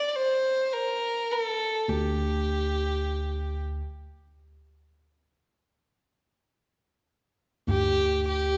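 A rich, intimate violin carries the melody up front from the start, bowed sul tasto with light vibrato, a soft attack and an airy tone, moving between G4 and D5 in a free-time D maqam bayati that feels longing and soulful. At 1.9 seconds an overdriven tine electric piano enters to hold a gritty D2 bass through a combo amp. Near 7.7 seconds a crisp, deep metal-shell darbuka struck with hard hands sounds briefly in the background, all set in the lingering reverb of a recital hall in this fragment of a longer Arabic ensemble piece.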